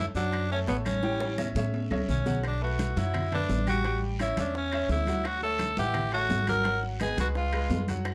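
Joyful and sunny, this salsa excerpt in straight 4/4 puts a growling tenor saxophone up front on the melody, its gritty tone carrying vibrato and a smooth top in a clear pop-style solo. A bright grand piano accompanies with brilliant, intimate presence, its action noise audible and its notes given long sustain, while a pizzicato upright bass sits equally forward, thumpy and woody with steel-string growl. Round, low-tuned bongos played with soft hands sit close, dry and very quiet, and thick-skinned congas and ringing metal-shell timbales stay in the background with a vintage, band-limited character. Quiet claves in a small room and a compressed, saturated guiro fill out the percussion, and a drum fill runs from 1.0 to 2.4 seconds. The harmony opens on F#m and moves through chords such as Bm7 and Dmaj9 before landing on C#7, all within a dark production and moderate studio ambience.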